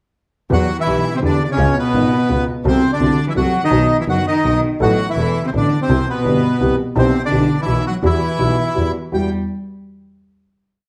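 Tango in a sultry, passionate mood, taken at 167 BPM in 3/4 with a rubato feel in E minor, this whole piece runs barely ten seconds. The reedy, close-miked bandoneon carries a motif-based melody of song-like phrases, full and up front, partly doubled in octaves. Beneath it a warm cello plays a second line with vibrato, soft attacks and expressive portamento, itself doubled at the octave. An intimate upright piano with woody tone and audible action noise accompanies in waltz time with an accent on one, while a bowed double bass, biting and nasal with an airy bow and light vibrato, anchors the same accented pattern. The harmony moves from Em through C#7, F#m7b5/C, B and Asus2 to C, returning through Em/B and B to close on an Emadd9, which rings as a final chord from 9.1 s. The ensemble sits in a large studio reverb heard from further back in the room, even though the bandoneon itself stays dry.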